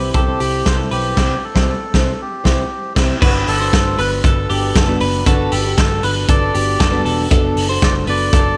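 A reedy, breathy melodica carries the melody with a slapback echo over a fingerpicked, full-bodied jumbo acoustic guitar, compressed twelve-string electric arpeggios with their own slapback, and a dark, round, foam-muted picked bass, all sitting on a C chord in this bright, nostalgic slice of jangly indie pop at 117 BPM in G major. A loose indie drum kit sits up front, gritty and saturated with a punchy kick, medium-tuned snare, hi-hat, ride and crash, and the band hits an accent from 1.2 to 3.2 seconds. At 3.2 seconds the harmony moves to Gmaj7 for the second section, all inside a light, small-room reverb.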